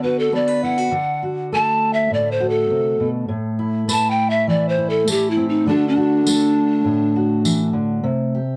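A mellow, hollow pan flute with an airy chiff and crisp attack carries the melody up front from the start, its bamboo tone touched by tape echo, while a fingerpicked steel-string acoustic guitar supplies warm dreadnought accompaniment beneath it. This intimate, haunting acoustic folk passage moves at 101 BPM in a straight 4/4, with a jingly tambourine joining at 3.9 seconds and dropping out at 7.6 seconds as the chords drift between Bm/D, D and Amadd9 before landing on Am7/C. The close, dry 1970s-style studio sound carries only light reverb, and the fragment is cut from a longer piece.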